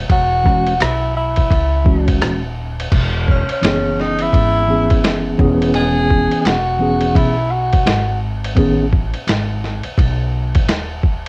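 A woody pizzicato upright bass opens this cool, relaxed jazz-hop fragment, joined almost at once by a muffled, compressed sampler-style drum kit with a thumpy kick, rim clicks and ride cymbal, its swung groove sounding tape-warm as if re-recorded in a small room. A mellow tenor saxophone with gentle vibrato plays a distant, roomy jazz solo through plate reverb until 8.2 seconds, over a clean tine electric piano whose chords, moving from E6 to C#m7/E, last until 8.8 seconds. Bass and drums then carry on alone to the end at 11.3 seconds, all captured on a lightly reverberant home cassette recording.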